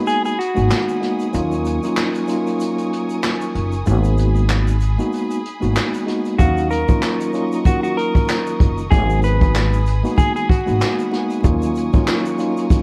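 A mellow tine electric piano, a smooth bowed string section and a dark, clean fingered electric guitar open this tough, dark boom-bap hip-hop excerpt together, with the guitar melody dropping out at 1.3 seconds. Almost at once a jazz brush drum kit settles in with a swung feel: distant and roomy, with a boomy kick, a medium-tuned snare, hi-hat and handclaps, its top rolled off yet sitting up front. A growly, woody pizzicato upright bass joins a moment later and sits equally forward, while a grainy, bright egg shaker stays in the background. The electric piano, heard through its built-in speakers with a cassette-tape colour, carries the Abm7 and Ebm7 harmony beneath the string chords, which float high with light vibrato. The guitar melody returns from 6.4 to 11.4 seconds. Over the whole mix hangs a small-room ambience and a worn, warbling old-tape character, complete with vinyl crackle and pitch drift.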